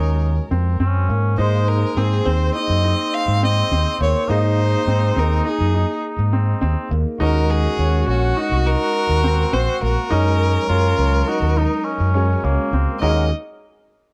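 Driving and tense, this progressive instrumental excerpt moves at 103 BPM in a straight 5/4, with a rich, focused bowed violin carrying the melody over a mellow cor anglais second line, a bright, barky electric piano with ensemble chorus sitting in the background, baby grand piano arpeggios with long sustain, and a punchy, overdriven fingered electric bass up front, all set in a dark production with plate reverb on the upper parts as the chords move from Gb through Ab and Ebm.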